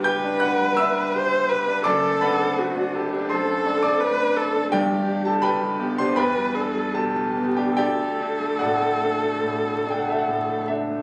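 Captured on a phone in a recital hall with moderate reverb, layered with club reverb and vinyl crackle, this fragment of a tender romantic duo for viola and grand piano moves in a rubato 4/4 at 72-86 BPM. Up front, a single close, bowed viola sings the melody with a soft attack, vibrato and expressive portamento until 10.6 seconds. A brilliant, deep-bassed concert grand accompanies over a warm progression from G through D7/F# and Em7 to D, ringing on alone to 11.0 seconds.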